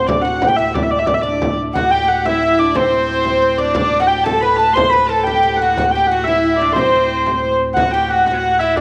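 Moving in a straight 6/8 at 120 BPM counted in dotted quarters, this festive, ancient-sounding medieval dance in D mixolydian opens with a dark, nasal hurdy-gurdy carrying the melody up front, while a plucked, fretless oud with double strings plays a second line beneath it. A deep, saturated frame drum and a soft, hollow stopped-flute organ drone with chiff and tremulant support them, and at 1.8 s a bright, distant shawm with vibrato joins on a second line. A wet echo chamber reverb gives the short passage, cut from a longer piece, a roomy glow.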